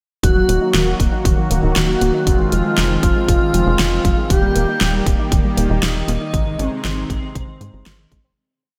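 A soft, octave-layered synth lead carries a repeating riff melody through this short, moody synthwave piece, its round, detuned tone thickened by a sub octave and touched with chorus, vibrato and delay. An airy, dreamy second lead doubles it in unison, brighter and softer, with chorus, phaser, delay and slapback echo. Beneath them, a mellow supersaw pad holds sustained chords that pump against the beat. A gentle pluck sits in the background playing a 16-step arpeggiated sequence with chorus and delay. A tight sequencer bass drives eighth notes with a dark, punchy filter-pluck bite. At 118 BPM in a straight 4/4, a punchy machine kick and an 80s-style kit with a fat snare backbeat and bright closed hats keep the nostalgic groove moving. The harmony moves through Ebm, Fm7, Eb and Ab in Eb dorian, all set in a lush hall reverb with a big arena sound, before the piece fades out from 5.7 seconds to its end at 8.4 seconds.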